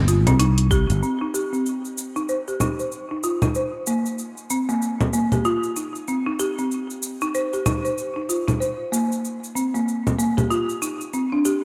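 Woody, rustic folk marimba arpeggios open this earthy, warm organic downtempo excerpt at 95 BPM in a swung 4/4, filtered and trailed by delay and shimmer reverb in C minor pentatonic, alongside a growly, punchy fretless electric bass that stops at 1.0 s, while overdriven electronic hi-hat, cabasa and congas sit up front from 0.1 s, a deep overdriven electronic kick lands briefly at 0.7 s, and the harmony moves from Eb6 to a long Cm7 under a lush hall reverb and bright 1980s-style digital sheen.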